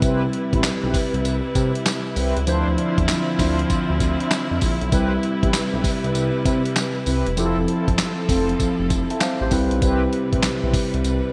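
Upbeat and bouncy, this brief new jack swing cut from a longer R&B piece moves at 98 BPM in C major with a 16th-note swing, cycling through Cmaj7, Dm9 and Fmaj7 chords. A dusty, gritty sampler-style drum kit sits up front with a thumpy kick, medium-tuned snare, hi-hat, handclaps and tambourine under gated reverb, while a smooth, nasal synth bass with vibrato anchors the low end. A worn, slightly out-of-tune tine electric piano and a woody, lush studio string section carry the harmony, and dark, round synth brass stabs with chorus sit in the background until 10.8 seconds, all bathed in a lush hall reverb and bright 1980s-style digital production.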